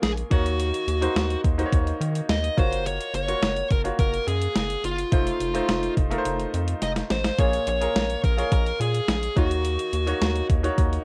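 Over a steady, straight 4/4 at 106 BPM, a clean 12-bit digital drum machine with a thumpy kick and medium-tuned snare drives this urgent, moody 1980s-style pop excerpt, as a rubbery square bass and a brilliant, short-sustained grand piano move through Ebm7, Gbmaj7, F7 and Bbm7 beneath a dark, overdriven lead guitar melody carrying analog delay and cassette tape coloring that stops at 10.5 seconds, with a drum fill from 6.8 to 7.4 seconds, all set in a small room on a home cassette recording.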